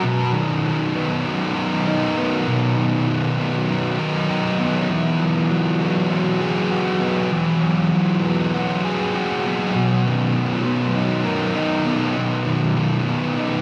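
A straight 4/4 rock pulse at 99 BPM carries this short cut from a longer piece, set in B major and tuned slightly low to A4 = 439 Hz. The mood is blissful and wistful, with a single thick fuzz guitar playing solo from the opening to 13.6 seconds, ranging from B2 up to A#4. The electric guitar is picked, double-tracked and up front, its heavy fuzz distortion carrying a subtle chorus and tape echo that lend it a warm glow. The harmony drifts from Bmaj7 to Eadd9 at 4.9 seconds and back to Bmaj7 at 9.7 seconds. A cathedral reverb with a 6.9-second tail soaks the whole mix, giving it a dreamy, floating sense of space.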